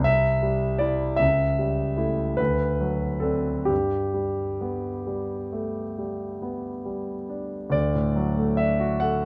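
This is a romantic classical nocturne for solo piano in G major, its mood dreamy and tender. It moves slowly in 9/8 at roughly 43-54 BPM, counted in dotted quarters, with a freely breathing rubato. A concert grand carries everything on its own, sounding clear and natural, placed up front with a deep bass and long sustain, reaching from C2 up to F#5. The harmony passes from C through A7/C#, D7 and G, then turns to D at 7.7 seconds as a new passage begins. A light reverb gives the brief 9.3-second fragment, cut from a longer piece, a gentle sense of space.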